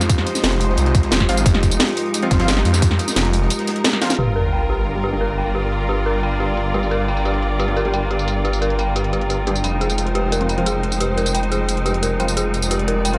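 Futuristic and mechanical, this dark technical drum and bass excerpt at 176 BPM in G phrygian drives a snarling, growling distorted saw bass up front beneath a biting, lush string section and a moody, nasal analog pad, while an overdriven drum and bass kit with a cracking snare and bright hats, a tight overdriven electronic kick until 2.9 s, a very quiet gritty breakbeat kit, and punchy orchestra-hit-like stabs with dub echo carry the opening, before a sub drop impact at 4.2 s ushers in eerie, inharmonic detuned synth bell arpeggios under a filter sweep as the chords move from Fmadd9 to Gm and back.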